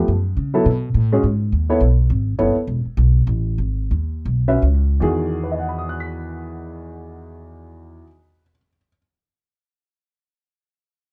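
A woody, thumpy pizzicato upright bass sits up front in this playful, sophisticated swing-jazz excerpt in E major, played at 145-208 BPM, beside a natural-sounding baby grand piano carrying the melody. The tempo slows from 2.4 to 5.0 seconds, where the harmony settles on an Emaj9 to open a second section. The bass stops at 8.0 seconds, and the piano continues to 9.0 seconds in a dark, warm production with light reverb.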